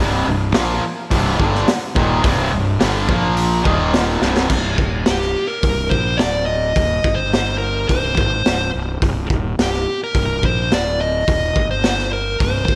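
A big, arena-sized hard rock sound with a lush hall reverb around a small-room ambience carries this aggressive, driving cut in C minor at 106 BPM. A bright, double-tracked distorted guitar riff with slapback echo opens over growly fuzz bass, with a gritty, punchy garage drum kit with dark cymbals and a high-tuned snare joining at 0.5 s, until the riff stops at 4.5 s just after a drum fill at 4.2 s. At 5.1 s a dark, smooth overdriven lead guitar enters with the melody over the continuing bass and drums, moving between Gm add11 chords and chordless stretches.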